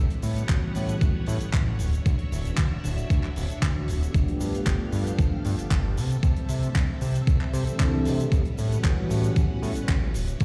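This excerpt sounds as if it were played through a big sound system in a bare room, with a large studio reverb giving it a roomy, reflective ambience. It is a groovy, feel-good nu-disco cut at 115 BPM in straight 4/4, moving through A13, Dmaj9, G9 and C6 before returning to A13. Up front, a thumpy, sampler-style electronic kick drum enters at 0.5 seconds, its overdrive and reverb adding punch. Beside it, a fat, detuned sawtooth bass with a plucky filter and fast attack carries the low end. A dry, polished funk kit adds handclaps, hi-hat and shaker. Filling the middle, a lush vintage string machine holds sustained chords through phaser, ensemble chorus and sidechain pumping, while a smooth, soft-attack analog pad with chorus and digital delay runs from 0.4 to 9.7 seconds, a filter sweep moving across it.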